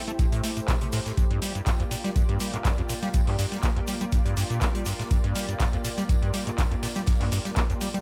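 A squelchy, resonant acid bass riff with tube saturation and filter sweeps drives this raw, trippy acid house excerpt, underpinned by a dry, deep electronic kick up front, a booming analog drum machine with metallic hats and handclaps, a grainy egg shaker and an airy studio kit of snare, hi-hat and tambourine in the background, while a lush, detuned sawtooth pad sustains Am7 and Gm7 chords through chorus, phaser and sidechain pumping.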